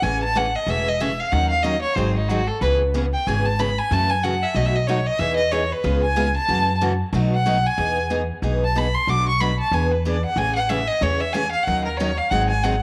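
Bathed in a moderate spring reverb, this playful, swinging jazz manouche excerpt in E major at 186 BPM features a rich, smooth bowed violin soloing with vibrato throughout over a bright, boxy picked steel-string acoustic guitar and a woody pizzicato upright bass.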